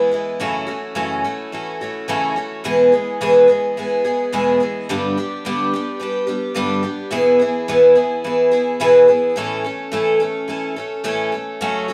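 Bathed in the wet reverb of a large studio and captured live, this short, hopeful and nostalgic rock cut features a bright, shimmering, octave-doubled picked twelve-string acoustic guitar sitting up front on its own, moving through F#m7, E, G and E before settling on A at 9.4 seconds.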